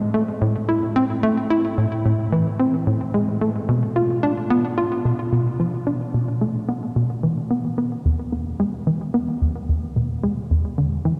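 A tight, punchy sequencer bass plays alone from the start in this hypnotic, mysterious ambient fragment at 110 BPM in 4/4, its dark sawtooth-and-square filter plucks with fast attack and decaying tails sitting up front between E2 and F4, touched with subtle chorus and delay and set in a vast, echoing cathedral reverb, before a new section arrives at 8.1 seconds and the bass drives on until 11.1 seconds.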